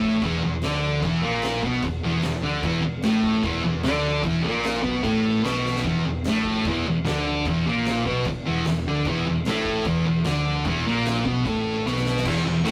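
A thick, double-tracked fuzz guitar riff leads this raw, swaggering garage rock excerpt in straight 4/4, up front over a round, dark picked bass in the background and an oversized low-tuned acoustic drum kit with a boomy kick, fat snare and dark cymbals in a pumping, bright stone room, with drum fills at 5.6 and 11.9 seconds and the whole piece carrying the rough, saturated sound of a rehearsal-room recording.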